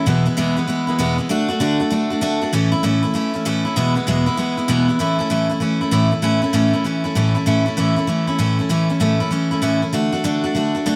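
Rock in A major at a brisk 195 BPM with a swung eighth-note feel, upbeat and rowdy. A lone picked steel-string acoustic guitar carries the whole 11-second excerpt, bright and full-bodied with fresh strings, sitting up front in a moderately ambient studio room where it sounds played live. Its chords move from E through D and A, then back to E, before settling on A at 5.0 seconds, with a turn to D at 9.9 seconds.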